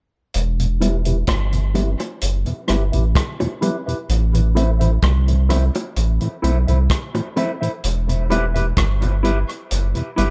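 Hypnotic and heavy, this dub reggae excerpt moves at 64 BPM in a straight 4/4, sitting in E minor as it shifts from Em to Am at 4.1 seconds and back to Em at 7.8 seconds. A deep, round sub bass sits up front, its soft triangle and square-wave tone sustaining low beneath a vintage acoustic drum kit of hi-hat, rim click and punchy kick with a rolled-off top, the drums sent into dub echo. A mellow tonewheel organ enters at 0.6 seconds, flute-like and clean, turning through chorus vibrato, a slow rotary speaker, a low-pass filter and dub echo. A dark, clean, fingered electric guitar follows at 0.8 seconds, filtered and echoed, alongside low-tuned bongos played with soft hands in the background until 8.5 seconds. A filter sweep runs across the whole passage, a part drops out from 7.8 seconds, and the echo-heavy mix carries a small room ambience.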